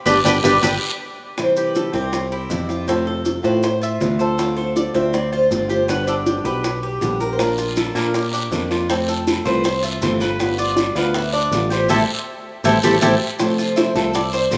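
Danceable and warm, this short cut of Cuban son and guajira sets a picked tres melody with metallic double strings over a second, brighter tres rolling out arpeggios and a fingerpicked nylon-string guitar that sounds small and fresh. Underneath, a growly, punchy picked electric bass joins round, low-tuned bongos and grainy, band-limited maracas sitting in the background, while a raspy guiro appears at the start and returns from 7.4 seconds. The band hits accents with drum fills at the opening and again near 12 seconds, all in a rough home-demo mix bathed in a lush hall reverb.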